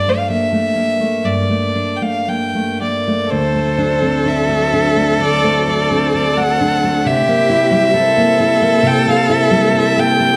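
A moderate recital hall reverb surrounds this short cut from a longer Celtic slow air, a mournful, longing piece in 4/4 that moves with a free, rubato feel. Up front, a single fiddle carries the melody with an earthy tone, light vibrato and a smooth top, touched by a slapback echo. Beneath it, a fingerpicked steel-string dreadnought guitar provides the accompaniment from the start, its fresh strings giving a full-bodied sound. At 3.3 seconds, as the harmony moves from Gmadd9 to D7, a single cello joins up front with a focused, vibrato-rich second line, while a very quiet, close studio string section adds lush, even sustained chords. The passage settles on C7 at 7.1 seconds and runs to its cut at 10.4 seconds.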